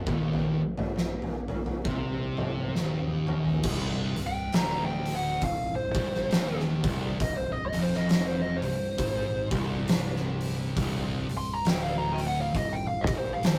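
Ominous and brooding, this stoner and doom metal excerpt crawls at 67 BPM in 4/4 with a swung feel, sitting on a single C minor chord. Two thick fuzz guitars play a dark, picked riff in the low register from the very start, one of them set back in the mix, while a growling fingered electric bass adds a bright, overdriven edge from the background. An oversized low-tuned drum kit sits up front with a boomy kick, fat snare, dark cymbals and a gritty, saturated, pumping room sound, playing a fill from 2.8 to 3.6 seconds. At 3.6 seconds the music shifts into a new section, and a fuzz lead guitar enters up front at 4.3 seconds with a high, distorted solo that runs to the end. The whole track carries a rough rehearsal-room character with a moderate small-room reverb.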